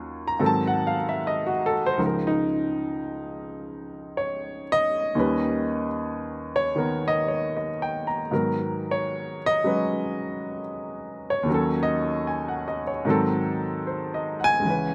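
The sound is dry and close, caught outdoors with barely any reverb, so the solo grand piano sits up front with its action noise plainly audible beneath the notes. This is a melancholic, smoky jazz ballad in 4/4 with a lazy swing on the eighth notes, a short passage lifted from a longer piece. The piano carries everything alone from 0.0 to 14.9 seconds, ranging from the low C#2 up to A#5, its tone clear and intimate, with a slapback echo trailing each phrase. The harmony leans on rich, dark colours, moving from G#7b9 through C#69 and D#7b13 to G#m9, then D#m7b5, before G#7b9 returns at 13.0 seconds. The result feels natural and unguarded, like a late-night player thinking aloud at the keys.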